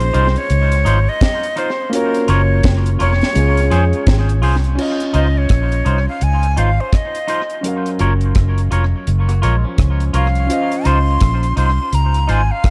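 Lovers rock reggae in Db major at 84 BPM with a swung sixteenth feel, sweet and smooth, where a breathy, bright jazz flute carries the melody with vibrato and a crisp chiff, taking a solo from 4.8 seconds over tape echo. Underneath, a round, foam-muted vintage electric bass sits up front with a dry drum kit of tight kick, high-tuned snare, rim click, hi-hat and crash. A clear concert grand piano comps through Dbmaj9, Gbmaj7 and Dbmaj7 harmonies, a twangy electric guitar adds echoed stabs, and a compressed, scooped clean guitar slips in arpeggios in the background from 9.3 to 10.5 seconds, all within a dark small-room production cut from a longer piece.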